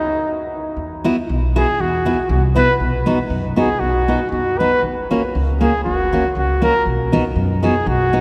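The sound is steeped in a deep cathedral reverb that lingers for nearly five seconds, as if the band were playing in a church or concert hall. This short excerpt is jolly, bouncy alpine dance-band folk in 2/4 at 118 BPM, in B major with a straight feel. A mellow trumpet opens alone, playing the melody in a classical style with light vibrato, up front in the mix. At 0.8 seconds a woody pizzicato upright bass on steel strings joins, and at 1.0 seconds a full-bodied jumbo steel-string acoustic guitar adds fingerpicked accompaniment, its finger squeak audible. Together they move through Esus2, B, F# and back to B.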